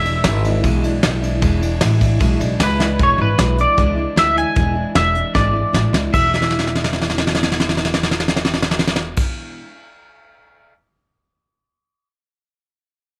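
Rowdy and retro, this 153 BPM rockabilly excerpt in E mixolydian puts a bright, twangy electric guitar melody, soaked in lush chorus and tape echo, up front over a dark, full-bodied picked acoustic guitar, a thumpy pizzicato upright bass and a soft brush kit with a fat snare and punchy kick, set in a moderate spring reverb, with drum fills at 2.8 seconds and 5.4 seconds and the kit carrying on past the other parts until 10.7 seconds.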